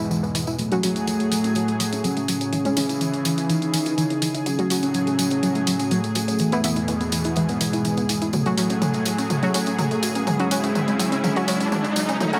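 Melodic techno in a driving, dark mood, this passage, cut from a longer piece, builds throughout. Over it sit a round, octave-layered synth lead with chorus and delay, a lush, detuned unison pad, and tight sawtooth arpeggios colored by cassette tape and tape echo. Filter sweeps shape both the arpeggios and a very quiet, brassy synth stab, while a jingly tambourine and a punchy analog drum machine with hi-hat and toms carry the beat; the drums break into a fill at 8.3 seconds before a background riser arrives at 10.0 seconds, all within a huge ambient reverb over a faint mains hum.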